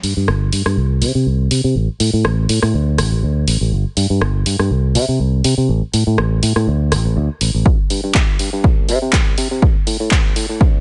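Swung at 122 BPM in 4/4, this feel-good, joyful filtered disco house excerpt opens with a growly, up-front fingered electric bass pumping under a filter sweep alongside a tape-warm analog drum machine of handclaps, pumping hi-hat and rim click, until a punchy electronic kick drum arrives at 7.7 seconds to drive a build-up in a dry, dark-topped mix.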